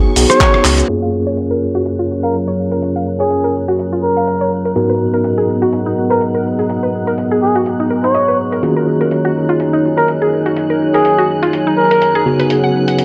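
A swung 124 BPM deep house groove in F# major carries this sunny, relaxed excerpt, with a dusty, tape-warm sampler kit of cabasa, handclaps, hi-hat and rim click entering just after the start, while an overdriven electronic kick and a round analog bass appear only briefly near the start, the bass stopping at 0.8 s. A clean tine electric piano plays stabs and a woody, mallet-like synth pluck plays arpeggios, both under a filter sweep from 0.9 s, over sustained chords from a moody analog pad, all three pumping to the sidechain. A warbling, nostalgic tape-like pad and a faint, sul tasto violin section sit in the background as a bucket-muted trumpet carries a mellow, veiled solo with scooped notes through chords moving from F#maj7 to G#m9 and D#m11, all in a gritty hardware sound with lush hall reverb.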